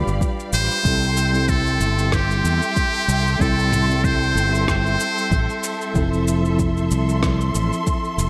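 A swung sixteenth-note feel in 4/4 carries this smooth sunset chillout piece, anchored by a deep, layered electronic kick and a gritty, overdriven sampler-style soul kit of rim clicks, shaker and toms treated with gated reverb. A punchy fretless electric bass sits up front in the low register, while a mellow tine electric piano with delay supplies the accompaniment beneath lush, bowed symphonic strings holding sustained chords with vibrato. At 0.5 seconds a brilliant, buzzy trumpet with a metal mute takes the melody, playing a pop-style solo line with light vibrato and delay until 5.6 seconds. The harmony moves from G7 to C6 and settles on Fmaj7 at 6.0 seconds. A moderate plate reverb and bright 1980s-style digital production give the mix a glossy, relaxed sheen.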